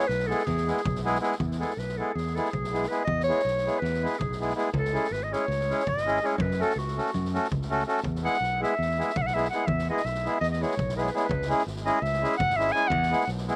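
The rhythm is a straight 9/8 pulse at 328 BPM counted in eighths, and the tempo keeps speeding up across this short cut from a longer Balkan wedding-band folk piece in E major, tuned slightly low with A4 at 438 Hz. The mood is wild and festive. A bright, classical-style clarinet sits up front carrying the melody, and from 1.4 seconds it takes a solo that runs to the end. A reedy, clear accordion with a dry tuning supplies the accompaniment, touched by a slapback echo. A direct, modern fingered electric bass holds the low end, and a street-band drum kit of kick and snare adds a boomy kick and a medium-tuned snare with a rolled-off top. The chords move from E through C#m and F#m and back to E, all in a dry outdoor sound with little reverb.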